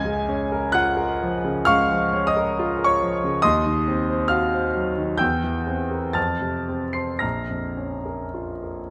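A classical romantic nocturne for solo grand piano in Bb minor, this melancholic, mournful fragment of a longer piece unfolds in 4/4 with a rubato feel between 53 and 71 BPM, the clear, intimate piano sitting up front across a range from Bb1 to C7 with long sustain and audible action noise, its close, detailed sound touched by light reverb as the harmony moves from Bbm/Db through Cdim/Eb, C7/E and F before arriving on Bbm at 7.2 seconds.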